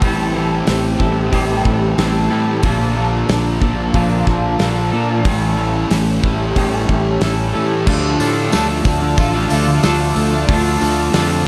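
A loose indie drum kit, up front with a tight kick, medium-tuned snare and pumping small-room sound, drives this hazy, melancholic shoegaze and dream pop excerpt at 92 BPM in A phrygian, joined by a growly, overdriven fuzz bass and a jingly tambourine that enters at 7.9 seconds. Thick, dark fuzz guitar and twangy, reverse-reverbed electric guitar carry the riffs, while a clean picked guitar with chorus and slapback echo plays arpeggios in the background. A deep, detuned sawtooth pad with slow attack and long release holds sustained chords through Am7, Bbmaj7 and A7 before the move to Dm.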